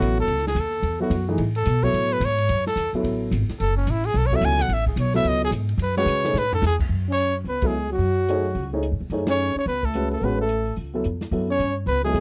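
Hypnotic and intense, this modal jazz excerpt swings at 218 BPM in 4/4, circling F# dorian on an F#m11 chord that shifts to F#madd9 near 6.9 seconds. A bright, close-miked trumpet carries the melody up front, opening with a solo passage colored by light vibrato. Beneath it, a dark baby grand piano comps with mellow, short-sustained chords and audible action noise, while a woody, growly upright bass played pizzicato thumps out the low end. The drum kit drives the swing with a punchy kick, medium-tuned snare, hi-hat, ride, crash and toms, its airy, polished sound carrying a hall quality, and a fill arrives around 6.1 seconds. At 7.1 seconds a breathy trombone slips in as a distant, whispered second line with a soft attack, as the band hits accents along the way. The overall sound is a dry, close 1970s-style studio recording with a small room ambience.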